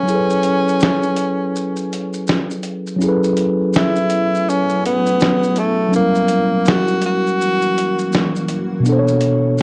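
Lo-fi hip hop at 82 BPM in F# minor, nostalgic and hazy, with a swung feel and a worn, warbling tape sound in a small room; a breathy, subtone tenor saxophone carries the jazz-style solo melody with vibrato and scooped notes through analog delay, over a mellow tine electric piano and a gritty, compressed sampler-style drum kit with a fat snare, hi-hat and shaker. A break falls from 1.5 to 3.0 seconds, the kick stays muted from 3.0 seconds on, and a cloudy, detuned granular pad drifts in softly in the background at 4.1 seconds. The harmony moves from F#m11 to F#7b9 and on to Bm9 in this brief cut from a longer piece.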